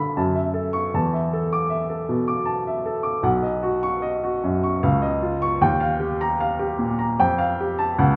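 A warm baby grand piano opens this brief excerpt of impressionist classical solo piano, playing alone in a three-beat metre with free, rubato timing that feels dreamy and serene. Its natural, short-sustained tone sits up front and spans from low bass to high treble, while a wet recital-hall reverb places the listener further back in the room. Suspended and add9 harmonies move from F#m7 through E7sus4 and Badd9 to Fadd9 across the 8.2 seconds.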